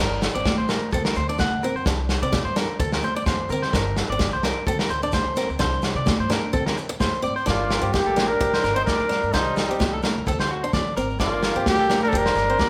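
Highlife guitar band at 128 BPM with a warm, danceable swing, where boxy picked acoustic guitar, bright clean electric guitar arpeggios, woody pizzicato upright bass, gritty saturated breakbeat drums up front, high-tuned congas and a grainy shekere set the groove before a vibrato-tinged trumpet takes the melody at 7.5 s in G minor over an edgy tenor saxophone second line, all in a live room with lush studio reverb.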